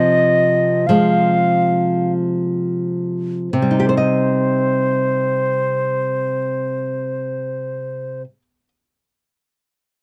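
Elegiac and solemn, this short cut from a longer romantic duo pairs a silver concert flute with a fingerpicked nylon-string guitar in a free, rubato 4/4. The flute carries the melody in an airy, straight, expressive tone with tongued phrasing, while the small, warm guitar supports it, both sitting up front in a dry, close 1970s-style studio sound touched with light reverb. The opening slows over an Fm/C chord before the second section begins on Cm at 3.5 seconds, and the guitar continues alone until 8.7 seconds.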